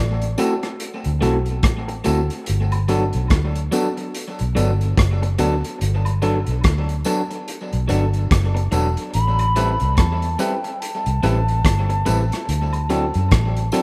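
A hollow, airy clay ocarina with vibrato carries the melody in this smooth, romantic lovers rock reggae excerpt at 72 BPM in G major, sounding a brief note at the start and then returning with tape echo from 9.1 to 13.7 seconds. Underneath, a round, punchy muted electric bass and a gritty, saturated breakbeat kit of hi-hat, tight kick and rim click sit up front, while a worn, slightly out-of-tune tine electric piano with light overdrive and a slightly broken-up guitar playing echoed stabs fill in over chords moving from D7 to Gmaj9 to Am7. Tambourine and woodblock with tape echo stay in the background of a rough home demo mix with light small-room reverb and a lazy 16th-note swing.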